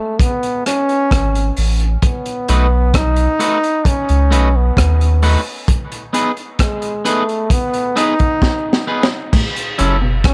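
Light studio reverb gives this short dub reggae excerpt a meditative, spacious air at 66 BPM, with a clear, punchy trombone carrying the melody up front with light vibrato and dub echo from the start. A crunchy, gritty breakbeat kit with a high-tuned snare and dark cymbals joins almost at once, the soft, round sub bass arrives at 1.1 seconds, and a twangy electric guitar at the edge of break-up adds echoed accompaniment from 2.5 seconds over chords moving from C#5 through B7 and G#m. Breaks open up the space, a drum fill arrives at 8.4 seconds, and in the closing moment a second, background guitar plays brief arpeggios over F#m7.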